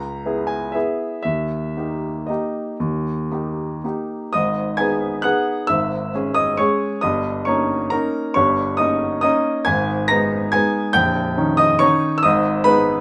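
Elegant and wistful, this short classical piano waltz in 3/4 moves with a flexible rubato feel, cut from a longer piece. A baby grand piano plays solo throughout the 13 seconds, its tone clear, present and polished, sitting up front in light reverb and ranging from deep bass to high treble. After an opening passage, a new section begins at 4.3 seconds, its minor-key harmony turning through dominant chords before settling home.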